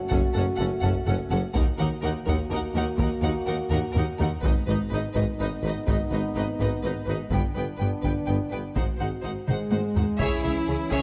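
Cinematic, epic orchestral film score in a dark, relentless 6/8 at 83 BPM, cut from a longer piece, where a close, dry taiko ensemble struck with hard sticks drives beneath mellow, tightly sustained French horn chords, with drum fills at 3.7 and 9.5 seconds. Lush bowed strings fill the texture: a warm, focused violin melody with vibrato sits over a clear, intense but distant second violin line and rich, even viola accompaniment, while the cellos, a smooth double bass section and a mellow solo tuba hold the bass in the background. The chords move from F#m through D#m, G#m, G and G#7, and a mellow trombone section enters at 10.2 seconds as the harmony lands on C#m, all set in a moderate scoring-stage reverb with detailed close miking.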